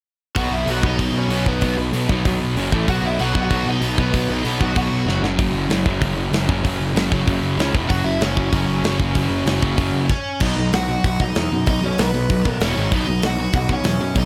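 A dry punk rock clip cut from a longer piece, with little reverb and a rebellious, rowdy energy at a driving 191 BPM in B major. A growly, fuzz-laden picked bass sits up front with the tight acoustic drum kit, whose bright cymbals, medium-tuned snare and tight kick give the straight 4/4 beat its snap, and a drum fill lands at 5.1 seconds. Behind them, two picked rhythm guitars churn out the riff throughout, one bright and compressed with distortion, the other a sludgier, overdriven layer. A dark, compressed overdriven guitar carries the melody, dropping out after 5.2 seconds and returning at 7.9 seconds. The chords move through B, F#5, A5, C#5 and E5. After a brief chordless moment, a new section begins at 10.4 seconds with B, E5 and G#5.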